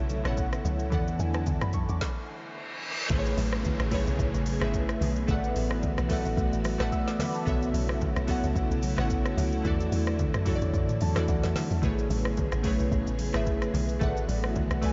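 A lightly swung 4/4 amapiano groove carries this relaxed excerpt, with an electronic afro-pop kit of deep kick, metallic hats, snare, rim click, shaker and toms up front, soft-handed congas ringing in the background, and a dark, punchy log drum bass. Up-front glassy, detuned digital keys with chorus and silky, mellow string-machine chords breathing with sidechain pumping float in a dreamy mix soaked in huge reverb. The groove stops at 2.0 seconds, and the reverse cymbal and downlifter enter at 2.3 seconds, the reverse cymbal leading into the drop at 3.1 seconds. The keys play a fill at 10.7 seconds.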